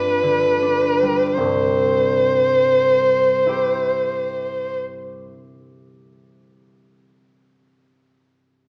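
Romantic classical duo in C major and 6/8, serene and lyrical at a rubato 29 BPM in dotted quarters, cut from a longer piece and tuned to A4 = 439 Hz: it slows over a G7 chord before settling on C at 1.4 seconds, while from the outset an up-front, dark solo violin sings a smooth-topped, expressive bowed melody with vibrato and portamento until 4.8 seconds, over a thumb-plucked concert harp whose ringing accompaniment spans its low to middle range and carries on alone to 6.9 seconds, all heard through a wet recital hall reverb with a small speaker sound.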